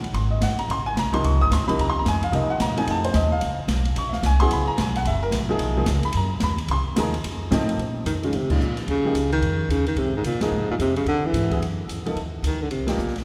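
Small-group swing and bop jazz in B-flat minor, this late-night, smoky excerpt moves at a brisk 220 BPM in 4/4 with swung eighth notes. Upright bass and an open drum kit run from the start, the bass woody and thumpy with steel-string pizzicato, while the kit pairs dark, smooth cymbals with a medium-tuned snare and a boomy kick. A boxy upright piano sits up front with short sustain, comping through shifting chords such as Dbmaj9, Ab13 and Bmaj9. At 8.1 seconds, just after the second section opens at 7.8 seconds over Bbm7 and Eb7sus2, a dark baritone saxophone takes the solo melody, smooth on top and placed forward in the mix. The band hits accents at 8.5, 10.4 and 12.9 seconds, all of it bathed in a lingering church reverb that gives the small group a cavernous, hall-like tail.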